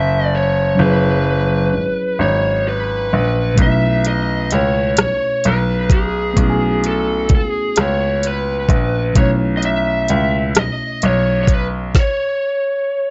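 Sultry and yearning, this slow R&B fragment in 6/8 moves at 43 BPM over suspended ninth chords, shifting from F#9sus4 to B9sus4. A dark, overdriven lead guitar through a small cranked amp carries the picked melody up front with a lo-fi edge, while a reedy, clean electric piano fills in the harmony and a clear baby grand piano holds down the bass with short, natural notes. At 3.6 seconds a produced electronic R&B kit enters with a knocking kick, woody snare, rim click and crisp hi-hats, tape-toned and forward, all set in light reverb with a softened top end.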